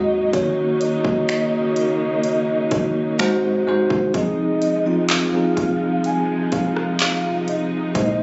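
This contemporary R&B fragment, cut from a longer piece, carries a late-night, longing mood at an unhurried pace. A soft, octave-layered synth lead with a round, full-bodied tone and gentle vibrato carries the melody, colored by chorus, phaser and digital delay. Up front, a bell-like tine electric piano rings bright and clean in accompaniment, while a clear studio string section holds lush, bowed chords beneath it. The trap drum kit enters at 0.3 s with crisp hats, a hard-clipped kick, finger snaps, handclaps and rim clicks, and a very quiet, boomy 808-style bass sits deep and dark underneath. The harmony moves from Ebm7 through Ab7 to Fm7, and the whole has a light reverb and a dulled top end, as if heard on a phone in the room.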